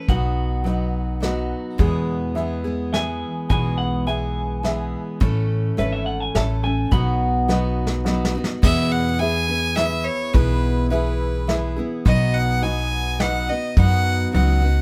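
A twangy, slightly broken-up electric guitar solo opens this sunny, nostalgic honky-tonk and classic country excerpt, in 3/4 at 105 BPM in E major, over a full-bodied picked dreadnought acoustic guitar with finger squeak, a woody pizzicato upright bass, soft brushed drums with dark cymbals and a tight kick, and a mellow, worn, slightly detuned upright piano; the electric guitar drops out at 7.2 s, and after a drum fill a clear, intense fiddle with light vibrato takes the melody from 8.6 s, framed by light reverb.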